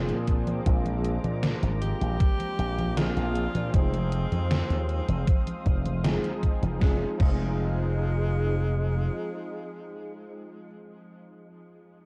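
A dark, cassette-tape production with light reverb gives this short vaporwave excerpt a hazy, nostalgic cast, moving at 78 BPM in a straight 4/4 in F dorian, from a Bb9 chord to Fm7 at 3.7 seconds. An electric grand piano carries the accompaniment with chorused unisons, a clangy low end, long sustain and tape echo, while a lush, detuned unison pad of sawtooth and square waves holds slow-attack chords in the background under chorus. Slap bass runs bright and punchy through an envelope filter, sitting up front beside a thumpy, overdriven electronic kick that was re-recorded in a small room. A gated 80s digital drum machine adds congas, crash cymbal, hi-hat and a gated-reverb snare, also overdriven and sampler-style, until the drums stop at 7.4 seconds. Entering at 1.8 seconds, a bright tenor saxophone plays a jazz-style solo melody with vibrato, a soft attack and tape echo.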